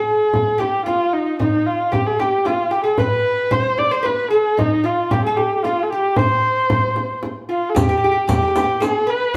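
In a straight three-beat lilt, this soulful, hypnotic Persian modal ensemble piece, cut from a longer performance, puts a dark, bowed kamancheh up front, expressive with vibrato, portamento, a soft attack and a smooth top, over a woody, fretless oud plucked with a plectrum on doubled strings as a second line, while a small, bright frame drum played with soft hands sits close and dry up front, and at 7.8 s a tight tombak struck with hard hands joins in the background alongside a close, dry riq with dusky jingles, the whole band playing live together in a large, reverberant studio room.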